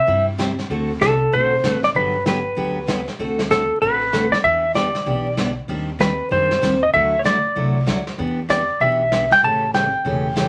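Wrapped in vinyl crackle and a wet studio ambience, this down-home, swinging western swing excerpt puts a dark, compressed, up-front clean lap steel guitar on the slide melody over a bright, full-bodied picked dreadnought acoustic guitar with audible finger squeak, a woody, thumpy pizzicato upright bass and a vintage brush drum kit with a medium-tuned snare in a small, pumping room, all moving through a chord progression that passes from C through D7, Gmaj7 and Em7 to a closing A7.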